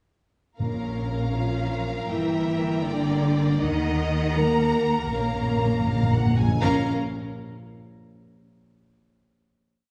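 A lush, expressive cello section doubles the tune at the octave in this heroic, dramatic orchestral film score in Bb minor at 80 BPM in a straight 6/8, moving through Bbm, Gm and Ebm. Vibrato-rich violins carry the smooth melody while a second violin line and the violas sustain tremolo chords, dark French horns hold tight sustained chords, and a distant bowed double bass section anchors the bass. Close timpani with medium mallets strike at 0.6 s and return with a fill from 5.1 s before a final chord at 6.6 s, the ensemble heard from further back in a wet scoring-stage reverb.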